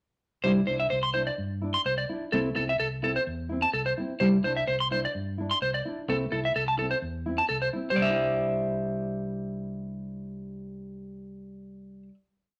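A lightly swung sixteenth-note lilt in 4/4 drives this short, joyful highlife piece, with all three parts entering together at 0.4 seconds. Up front, a bright, twangy electric guitar at the edge of break-up picks a pedal-note arpeggio in sixteenths high in its range, its slightly broken-up edge giving the groove its sparkle. Beside it, a dark, full-bodied nylon-string guitar plays thumb-plucked rhythmic strumming in upper chord shapes, with a deep classical body. Underneath, a round, amped fingered electric bass sits low and soft in the mix with a dotted figure. The harmony sways between Cadd9 and Am/C before settling on a final Cadd9 chord at 8.0 seconds, held to the close. A wet studio reverb with a short tail gives the sound a warm, cohesive glow.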